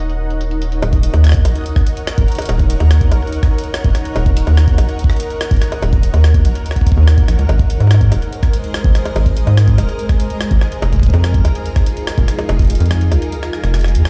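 A straight 4/4 pulse at 144 BPM drives this melancholic, eerie IDM excerpt in Eb dorian, cut from a longer piece, with a gritty, pitched-up jungle sampler-style kit of bongos, hi-hat and rim click running from 0.1 seconds, its hats, percussion and snare dulled by low-pass filtering and trailed by delay. A compressed, thumpy electronic kick sits up front, entering at 0.9 seconds and dropping out at 12.7 seconds, just before a break at 13.3 seconds that gives way to a drum fill. Beneath it, a rubbery square bass bounces through a dark, hollow low register with a resonant filter pluck, prominent in the mix. A granular cloud pad holds sustained chords moving from Ebm7 to Ab and then Fm7, its detuned unison voices blurred and bright, pumping with sidechain and bathed in its own reverb. Far in the background, a reversed, dreamy texture swells softly, and the whole sits in a bare room played over a big sound system with a large studio reverb.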